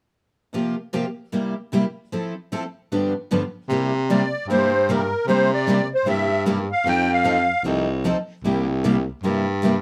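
Acoustic string swing in the jazz manouche style, charming and lively at 152 BPM in C mixolydian, opens at 0.5 seconds with two picked steel-string acoustic guitars in accompaniment, one warm and up front with fresh strings and audible finger squeak, the other bright and set in the background. At 3.7 seconds a breathy, whispered baritone saxophone takes the bass line with a soft attack and vibrato, intimate and present, and at 4.1 seconds a reedy musette accordion enters up front with a shimmering melody that carries until 7.6 seconds. Close, detailed microphones and light reverb frame this lilting excerpt cut from a longer piece.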